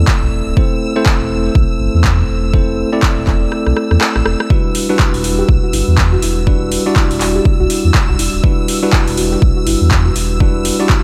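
Warm and late-night, this deep house excerpt sets bell-like tine electric piano stabs with tape echo and a deep sub bass with octave, both pumping from sidechain compression, over a faint, shimmering string machine of violins with ensemble chorus, a punchy overdriven electronic kick and an overdriven drum kit of handclaps, metallic hi-hat and rim click; the kick drops out beneath a drum fill from 3.5 to 4.5 seconds, and at 4.5 seconds a soft, round pluck joins with dark background arpeggios carrying chorus, vintage 12-bit sampler grit, analog delay and sidechain pumping as the harmony moves from Am to Em9 in a dry, close mix.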